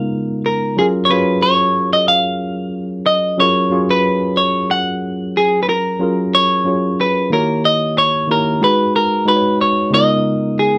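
Heard in a small room with moderate reverb, this short cut from a longer R&B piece places both parts up front. At 92 BPM in 4/4 with a light sixteenth-note swing, the mood is soulful and relaxed, settled in F# major. A clean, picked semi-hollow electric guitar carries the melody from 0.0 to 10.8 seconds between G#4 and F#5, its warm hollow-body tone touched with slapback echo. Beneath it, a worn tine electric piano, slightly out of tune and heard through built-in speakers, supplies the accompaniment across the same span. The harmony opens on C#13 and rests on F#maj9 through the first section. The second section begins at 6.0 seconds and moves through D#7b9 and G#m7 before returning to C#13.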